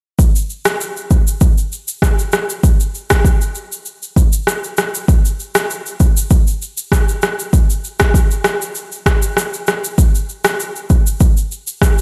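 An afro-pop drum kit leads this short afrobeats excerpt, an electronic, produced groove built from a deep kick, rim click and shaker that sits up front in the mix. The tempo is 98 BPM in 4/4, with a 55% swing on the sixteenths. The kit carries a tape-warm character and the sense of having been re-recorded in a small room, while light reverb surrounds the sound. The drums play alone from 0.2 to 12.0 seconds, holding a single section throughout. The mood is joyful and romantic, and the excerpt is cut from a longer piece.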